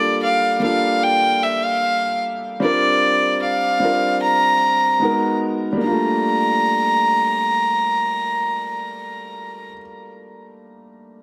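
Contemporary R&B with a sensual, longing mood and a lightly swung feel, cut from a longer piece. A single bowed fiddle carries the melody up front, its nasal, reedy gut-string tone trailed by tape echo, while an intimate concert grand piano accompanies with deep bass, long sustain, a boxy character and audible action noise. The fiddle falls away at 9.7 seconds, leaving the piano to ring on until 11.2 seconds inside a lush hall reverb.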